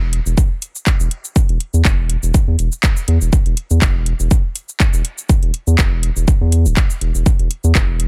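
A round, dark analog bass with sidechain pumping opens this hypnotic, clinical minimal techno excerpt in swung 4/4, joined by a tape-warm house kit of cabasa, handclaps and metallic hi-hats and, from 0.4 s, a punchy, up-front electronic kick, all in a dry, close-sounding space.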